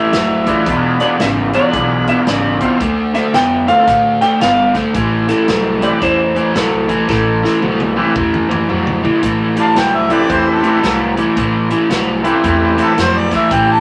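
A swung shuffle in four drives this smoky, brooding electric blues, cut from a longer piece. A raw garage guitar sits up front with an overdriven low riff throughout, while an upright bass adds woody, thumpy pizzicato beneath a natural-sounding country drum kit with a punchy kick and medium-tuned snare. A tonewheel organ fills in the accompaniment with a full, lightly driven tone, key click and a slow rotary speaker. A bright, twangy guitar through a small old amp carries the melody with a slightly broken-up edge until 8.7 seconds, and a drum fill from 7.1 seconds leads into the second section. At 9.2 seconds a mellow, overdriven harmonica takes a jazz-style solo full of tongue slaps, scooped notes and light vibrato, all set in a moderate studio reverb.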